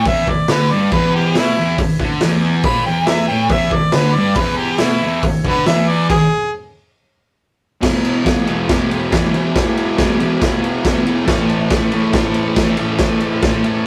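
Garage rock at 139 BPM in E mixolydian, raw and rowdy, with a clear, overdriven harmonica playing the solo melody until 6.5 seconds over a thick, double-tracked fuzz guitar riff and a punchy, gritty acoustic drum kit in a small, pumping room, while a buzzy vintage combo organ holds sustained chords in the background and adds a short fill at 13.4 seconds, in a rough rehearsal-room recording with tube saturation and moderate reverb.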